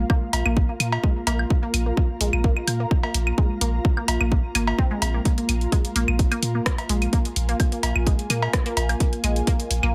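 At 128 BPM in 4/4 with a light 16th-note swing, this hypnotic, quirky minimal techno cut from a longer piece rides on a punchy, up-front electronic kick, hi-hat and rim click from a house kit, and overdriven analog woodblock, cowbell and claves. A deep, mellow sine sub bass with a pitch-drop attack sits up front with sidechain pumping, while a squelchy, resonant, detuned sawtooth blip pluck plays a riff through phaser and digital delay, and an ethereal, airy pad with ensemble chorus and built-in reverb pumps softly behind. The kick and kit carry a tape-tinged, large-room character under light reverb.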